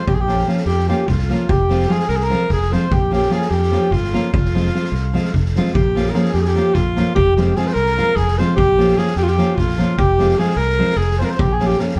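Balkan folk in a wedding-band style, this short cut moves at 297 BPM in eighths through a straight 7/8, alternating between Bb minor and F minor across two passes of the same section with a virtuosic yet bittersweet mood. A clear alto saxophone with light vibrato carries the melody up front in a classical manner, joined by a reedy, mellow accordion on the second line, while a full-bodied, fingerpicked nylon-string guitar sits forward in the accompaniment. Underneath, an overdriven, bright fingered electric bass and a street-band kit with a boomy kick, medium-tuned snare and rolled-off top drive the groove, all heard from further back in a wet studio reverb.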